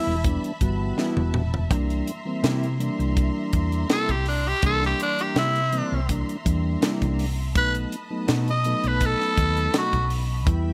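Straight-eighth soul blues with a soulful, brooding mood, this excerpt puts a raspy, growling tenor saxophone up front over a flute-like tonewheel organ on slow rotary speaker, a round hollow-body bass, a tight funk drum kit with a high-tuned snare that plays a fill at 1.0 seconds, clean electric guitar stabs in the background, and distant, biting symphonic strings holding chords, all in a small room with light reverb as the harmony moves from Em to C7 and then B7.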